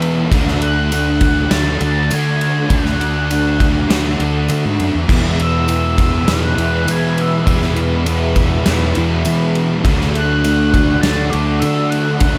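A straight 4/4 pulse is set by a gated 80s drum kit, up front and punchy, with a bright, airy stone-room sheen on its kick, medium-tuned snare, crash and ride. This is a hazy, wistful slice of shoegaze-tinged dream pop rock, cut from a longer piece. Beneath it, a round, dark fingered electric bass with fuzzy overdrive sits prominently, while three guitars layer riffs in the background: a double-tracked overdriven guitar, a lo-fi garage guitar colored by reverse reverb, and a thick, distorted fuzz guitar thickened by ensemble chorus. From 0.6 seconds a mellow, horn-like synth lead floats high above, vintage and full-bodied, warbling with vibrato, chorus and digital delay, as a jingly, close tambourine adds glints from 0.9 seconds. At 6.1 seconds a deep, moody analog pad slides in with slow-attack sustained chords treated with chorus and phaser. The chords move from D to E to Dmaj7, and a small room reverb gives the whole a snug, enveloping space.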